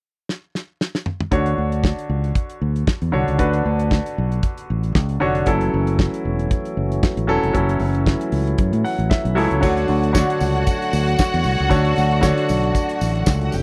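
Danceable and glamorous, this disco excerpt moves at 116 BPM in D major with a light sixteenth-note swing, opening on a drum fill from the damped, tight-kicked kit before a clear, polished grand piano and a dark, round, punchy fingered bass arrive up front at 1.3 seconds over Dmaj7 and F#m7 chords. A fat, lightly overdriven tonewheel organ with slow rotary speaker adds sustained chords from 5.5 seconds, and after a piano fill, lush, distant bowed strings with vibrato and a jingly tambourine in the background join at 9.6 seconds. The sound is dry and close, in the manner of a 1970s studio.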